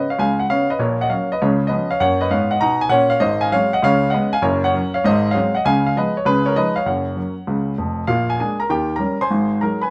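Swinging eighth notes at a brisk 198 BPM drive this playful, nearly 10-second slice of stride piano jazz in F# major, where a clear, up-front solo grand piano ranges from deep bass to bright upper notes over a C#7 to F# progression that turns toward A#7, D#7 and G#7 at 8.1 seconds, set in a moderate studio ambience.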